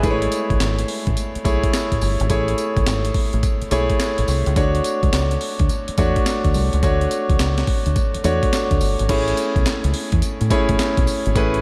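Slick and confident, this new jack swing R&B excerpt rides a swung 16th-note groove at 106 BPM in 4/4, with a gritty, compressed breakbeat sampler kit of thumpy kick, high-tuned snare, hi-hat, handclaps, tambourine and crash cymbal up front, a dark, round, foam-muted fingered electric bass down low, and a smooth, vintage concert grand piano voicing Amaj7 and Dmaj7 before returning to Amaj7 at 9.1 seconds, all soaked in a dreamy cathedral reverb.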